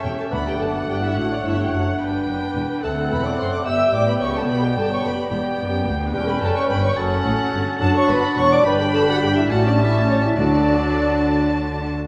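A quick, cheerful classical-period movement for symphony orchestra in D major, moving in a lively 6/8 at 72 BPM, where veiled, con sordino violins carry the melody over second lines from a second muted violin section, an airy flute ensemble, a clear clarinet and a warm oboe, while muted violas and a roomy bassoon accompany, a mellow French horn section holds sustained chords, muted cellos and double basses supply the bass, and close, dry timpani sound D3 from 0.3 to 1.1 seconds and again from 10.4 to 11.2 seconds, all bathed in a wet scoring-stage reverb as the chords run from D through G, F#m and A7 back to D.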